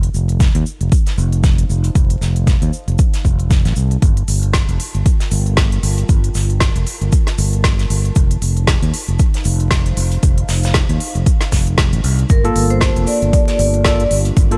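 Moody and deep, this deep house excerpt moves at 116 BPM in 4/4 with a swung sixteenth-note feel, cut from a longer piece and set over a studio reverb with a touch of vinyl crackle. An up-front, layered electronic kick anchors the groove alongside a growly, overdriven fingered electric bass that pumps against the sidechain, while an electronic kit adds a woody snare and smooth hats, and a small-room acoustic kit with shaker sits in the background under high-pass filtering. A dark, detuned ambient pad fades in from the start, its slow attack and long release wrapped in chorus and reverb as the harmony shifts between F7 and Gm9. At 12.3 seconds a warbling, nostalgic tape-like pad joins with lo-fi, vintage sustained chords, and a metallic, ringing vibraphone with medium motor vibrato plays a brief band-limited melody that closes at 14.2 seconds. A moment after the pad arrives, a clean tine electric piano adds delayed stabs through a combo amp.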